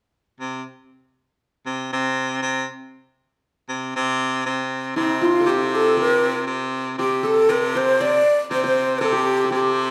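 A hollow, breathy ney carries the melody up front from 5.0 seconds in this festive Arabic excerpt, joined at that moment by a bright-edged qanun played with fingerpicks on a second line, while an edgy baritone saxophone with vibrato holds down the bass from 0.4 seconds, the band playing live together in one room bathed in wet studio reverb.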